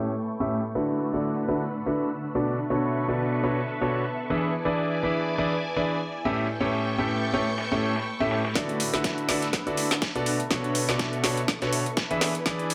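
A bright, pumping piano house excerpt at 123 BPM in D major with a joyful, uplifting mood, led by an up-front, clear concert grand piano riff with deep bass, filtered and delayed, over shimmering string-machine violin chords, a cloudy granular pad and a gritty, dusty soul sampler-style kit in the background, as the A7–D69–Bm9–E7 progression moves through a filter sweep until, at 8.6 seconds, a punchy electronic kick and an overdriven garage kit with woody snare and metallic hats join for a build-up and drum fill.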